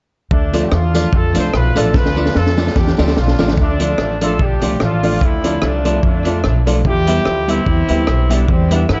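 A crunchy breakbeat kit sits up front in this energetic, driving ska excerpt, its punchy kick and high-tuned snare sounding saturated and gritty, with a tape echo trailing behind. A woody, thumpy upright bass on gut strings is just as forward, played pizzicato beneath a tight, mellow horn section that carries the melody from a distant, roomy place, touched with the same tape echo. In the background, a clean, fingered semi-hollow electric guitar adds accompaniment with its own echo, while a worn, boxy upright piano, slightly detuned and with audible action noise, punches short stabs. A jingly, vintage tambourine rides along until 3.5 s, and a drum fill starting at 1.9 s carries the first section into the second, where the harmony moves from D minor to E minor at 6.8 s. The production is dark and warm, with a rolled-off top and a light small-room reverb.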